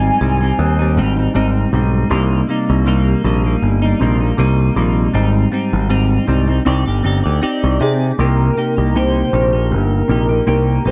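Set in a digital ambience, this hazy, wistful slice of bedroom-flavoured indie pop moves at 79 BPM in C minor with a gentle 16th-note swing, drifting between Abmaj7 and Cm7 colours. A clean, compressed electric guitar carries the accompaniment up front through chorus and vibrato, while a growly, punchy picked bass sits bright and direct underneath. A velvety, detuned sawtooth synth lead with chorus and slapback echo voices the melody briefly at the opening, then returns at 7.8 seconds, mellow and sustained, just before the harmony settles onto Cm7.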